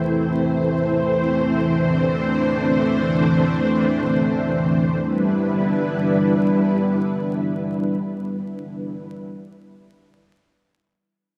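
Vinyl crackle and a moderate, lush hall reverb with a 2.4-second tail frame this brooding, smoky trip hop fragment in free time, cut from a longer piece in E minor and tuned to A4 = 438 Hz. A vintage string machine set to cellos holds sustained chords up front from 0.0 to 9.1 s, its sawtooth tone thickened by a sub octave and ensemble chorus, with a slow attack and long release giving each chord a mellow, evolving bloom. The harmony rests on Am/E before shifting to Em7 at 5.0 s.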